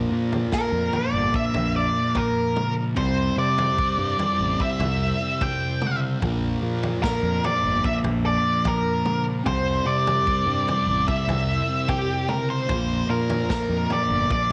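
An up-front octave-fuzz lead guitar with slapback echo carries the melody from 0.5 s in this hazy, kaleidoscopic psychedelic rock excerpt at 74 BPM, over a thick, double-tracked fuzz guitar riff with phaser, a round, overdriven fingered bass, a vintage drum kit with a punchy kick and rolled-off top entering at 0.3 s, and a very quiet, bright tonewheel organ holding sustained chords through a slow rotary speaker with key click, all moving between Bb and C in a lightly reverberant studio room.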